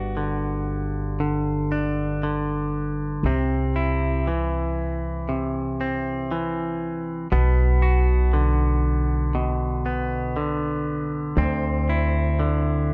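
In a straight, unhurried 4/4, this heartfelt, nostalgic folk-pop ballad excerpt pairs a twangy, picked clean electric guitar, recorded direct, compressed and up front, with a woody pizzicato upright bass on steel strings, both playing throughout. The guitar carries the accompaniment through a G5, C, Bm and D5 progression while the bass holds the low end beneath it. Light reverb and a dark production give the short passage an intimate, reflective glow.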